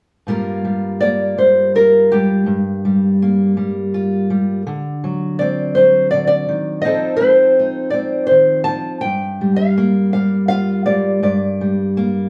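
A fingerpicked nylon-string guitar carries the melody up front, its small, dark tone entering at 1.0 seconds and ranging from G4 to A5 over the accompaniment. Beneath it, a fingerpicked steel-string acoustic guitar plays from 0.3 seconds, spanning G2 to Bb4 with an auditorium-sized body and audible finger squeak. This is a heartbroken, melancholic acoustic folk-pop ballad in G minor, moving at 82 BPM in a straight 3/4. The harmony passes from Gm7 through D7 and F7 before returning to Gm7 at 9.0 seconds. The two guitars sound as if played live together in one room, bathed in a wet studio reverb, and the passage is cut from a longer piece.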